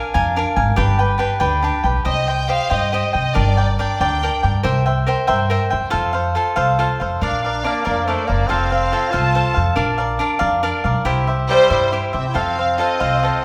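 This excerpt opens with a crisp, picked cavaquinho picking out the accompaniment up front, joined almost at once by a woody, growly upright bass played pizzicato. It is a proud, romantic piece of Mexican folk in the mariachi style, moving in 6/8 at 94 BPM in Bb major. At 2.1 seconds a lush studio violin section enters with the melody, its bowed ensemble sound expressive and full of vibrato yet set a little distant, then drops out before returning at 7.2 seconds. At that same point a clear, classical-style solo trumpet adds a lower second line beneath the violins, carrying through to the end. The harmony moves from Cm and Gm through C7 to F, then settles into a Bb, F and C progression, all heard within a recital hall reverb that gives the recording a wet, spacious finish.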